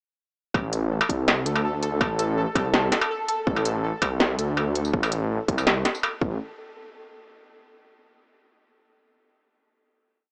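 A dry, gritty cassette recording with a small-speaker sound frames this heavy, dark half-time drum and bass piece, which drops in at 0.5 seconds and ends on a final hit at 6.4 seconds. Up front, a deep, rumbling detuned saw bass plays long gliding notes, saturated and beating, beneath a hard-clipped electronic kick and an industrial kit whose clanging snare, crisp hi-hats, struck metal and tambourine form a sparse beat. Above it all, a bright, pulsing gated texture holds a single high note, washed in chorus and its own reverb.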